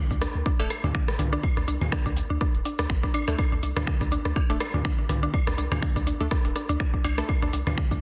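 A swung 4/4 groove opens this short cut from a longer minimal techno piece, with a prominent, layered electronic kick drum up front carrying the pulse. Around it, a booming analog drum machine adds finger snaps, metallic hi-hats, a shaker and a softly clipped snare, while a tape-warm percussion layer of rim click, woodblock, claves and congas, re-recorded in a large room, enters at 0.2 seconds. A deep sine sub bass with a pitch-drop attack and sustained body pumps with sidechain compression. A woody, round, FM mallet-like pluck plays a riff with chorus, sidechain pumping and dub echo. From 0.6 seconds, a crisp, detuned, wave-folded wavetable chord stab with a moving notch sits bright in the background, trailed by dub echo. The mood is clinical and sparse, set in light reverb within a dense, heavily limited modern master.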